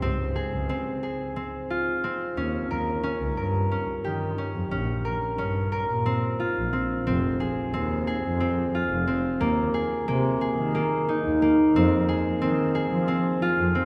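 Drenched in a long church reverb, this urgent yet pensive excerpt of contemporary chamber music in F minor moves in 7/8 at 179 eighth-note beats per minute, with a bright, ringing concert harp fingerpicking arpeggios up front over a veiled, muted double bass bowed with vibrato, the harmony turning from Dbmaj7 toward Bbmadd9 at 4.7 seconds.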